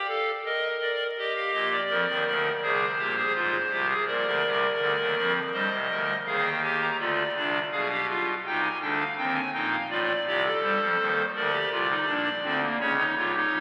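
Through the crackle of a very old 78 rpm record and a wet church reverb, a stately, joyful baroque-style three-part fugue at 82 BPM in 4/4 unfolds on solo pipe organ, its hollow clarinet reed stop up front with romantic voicing and tremulant, spanning Ab1 to Bb5, while the harmony moves through Bb, Eb and Ab before turning toward G7, Cm and F7/A at 7.0 s and reaching an Eb13 in this cut from a longer piece.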